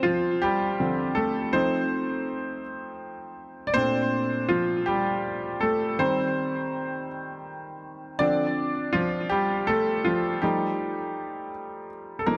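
A slow 6/8 sway at 54 BPM carries this tender R&B fragment, a solo grand piano with a clear, worn, up-front tone and a touch of tape echo, moving through Dm7, F7, Bbmaj9, Eb6 and back to Dm7 before closing on F9, heard in a small room with light reverb and tuned to A4 = 441 Hz.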